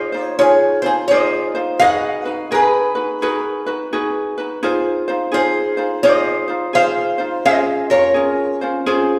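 A lap resonator guitar leads this relaxed, languid Hawaiian piece, its metallic, nasal slide melody played with fingerpicks and sitting up front until 8.6 seconds. Beneath it, a bright, light ukulele provides fingerpicked accompaniment, also up front, and carries on to the close at 9.2 seconds. The tempo is an easy 85 BPM in 4/4, with a gentle swing on the eighth notes, in Db major, tuned slightly above standard pitch at A4 = 441 Hz. The harmony moves from Dbmaj9 through Abm7/Eb and Fm7 to Bbm9, giving the short passage a soft, jazzy color. A wet recital-hall reverb places the listener further back in the room, lending the duo an airy sense of space in this excerpt from a longer performance.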